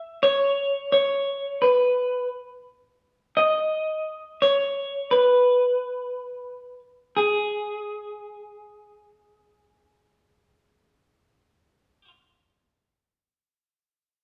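An electric guitar played through a small old amp carries the melody, its tone bright, twangy and slightly broken-up, picked and sitting up front with a splash of spring reverb. This short rock excerpt moves at 87 BPM in 3/4 with a straight feel, giving it a lilting yet steady gait. The guitar line stays within a narrow register from G#4 to E5 and plays throughout, from 0.0 to 12.1 seconds. The band was recorded live in one room, and a wet stone-room reverb adds a lingering, echoing space around the sound. The mood is euphoric and hopeful, with the music shifting into a new section at 7.2 seconds before the clip breaks off partway through a longer piece.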